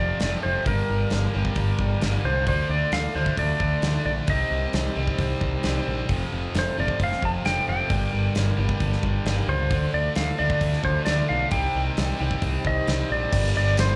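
This brooding classic rock excerpt opens at full strength. A twangy, compressed lap steel carries the melody with slide and volume swells. A growling, punchy bass sits up front, and two bright, picked overdriven guitars play the riff, one cranked through a stack and the other set back in the background. A very quiet, flute-like tonewheel organ holds soft chords underneath, with key click and a slow rotary speaker. From 0.2 seconds a big acoustic rock kit drives a straight 4/4 at 133 BPM, with a tight kick, a medium-tuned snare, hi-hat and crash, and a warm, rolled-off top. The harmony in G minor cycles through F, Gm, Dm and Cm, and slapback echo colours the lap steel and both guitars. The background guitar drops out at 13.3 seconds as the chords land on Gm and a jingly, vintage tambourine slips in, all heard as a live gig through a club PA.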